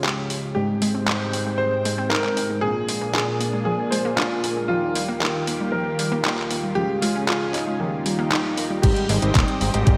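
A warm, present grand piano carries the melody in this sunny, romantic italo disco excerpt at 116 BPM in Ab major, its short-sustained notes touched with subtle chorus and digital delay over a lush, detuned unison pad and glossy chorused polysynth stabs, both under filter sweeps, while a round analog pluck arpeggiates in the background. An overdriven, detuned 8-bit drum machine sits up front with crash, handclaps and hi-hat, and at 8.8 seconds a fat, wave-folded analog bass and a thumpy overdriven kick arrive as the chords settle on Abmaj7. The bright 1980s-style digital production is bathed in a lush hall reverb and dusted with vinyl crackle.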